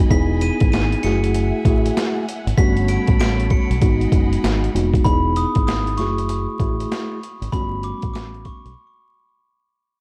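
Gritty and tough, this boom-bap hip-hop fragment at 97 BPM swings over a compressed, pitched-down sampler drum kit with a thumpy kick and high-tuned overdriven snare, a round, punchy dub bass, a mellow tine electric piano carrying cassette-tape character through Emaj7, F#m9 and Gmaj9#11 chords, a sparkling bell-like glockenspiel melody with delay, and distant lush strings that sustain only until 5.0 seconds, all under worn, warbling tape drift and vinyl crackle before a fade from 5.1 seconds and a break at 8.8 seconds.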